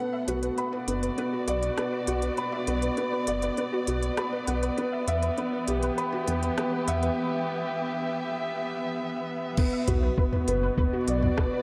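A dark, warm production bathes this cinematic, hypnotic piano and strings electronica in a huge ambient reverb, in a short cut from a longer piece. A felt-muted upright piano sits up front with a soft, boxy, intimate riff echoed by delay, while a dark chamber string section holds bowed, vibrato-tinged sustained chords that move from B minor to E minor and back, pumping with sidechain. Deep in the background, a round, gentle pluck spins chorused, delayed arpeggios, and from 0.3 seconds a rumbling, detuned saw bass beats beneath it all, also pumping with sidechain. An organic electronic drum kit with crisp, high-passed hats, rim clicks, toms and crash cymbals carries a tape-warm, small-room character through the build-up, which leads into a break at 7.2 seconds. At 9.6 seconds the drop lands as a compressed, muffled, thumpy electronic kick pushes up front to drive the closing bars.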